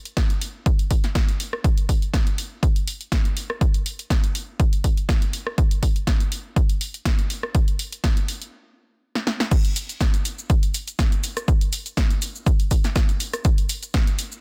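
Feel-good and funky, this short house cut at 122 BPM in 4/4 rides a lightly swung sixteenth groove: an up-front, tape-warm electronic kick sits under an analog drum machine whose punchy snare, rim click, shaker, hi-hat and crash cymbal have sidechain pumping on the hats, cymbals and percussion. A filter sweep runs through to 9.5 seconds, the groove stops at 8.5 seconds, a drum fill arrives at 9.1 seconds and the drop hits at 9.5 seconds, with digital ambience and a dense, heavily limited modern master.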